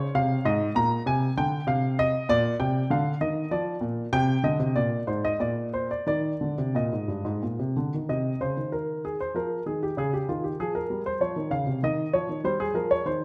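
In a 3/4 at 97 BPM, played with a free, rubato feel, this fragment of a longer piece unfolds as a flowing, serene baroque-style suite movement in E-flat major. A solo baby grand piano carries everything, spanning G2 to Bb5 with a dark, mellow tone, short sustain and audible action noise that lends an intimate, natural closeness. The instrument sits up front, surrounded by a wet recital hall reverb that gives the notes a gentle halo. The harmony moves through Ab, Bb and C minor to an Abadd9 before a brief unharmonized moment and an open Eb5 at 6.1 seconds. A second statement of the opening phrase begins at 8.1 seconds on Cm7 and comes to rest on E-flat at 11.8 seconds.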